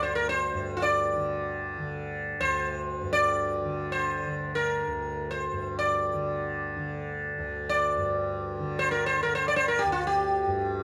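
In free time, this introspective, solemn Hindustani classical excerpt sets a round, plectrum-plucked sitar with shimmering sympathetic strings and plate reverb singing its melody between F4 and D5 up front, over a mellow, softly plucked tanpura drone buzzing low from D2 to D3, tuned to A4 = 439 Hz in a moderate studio room.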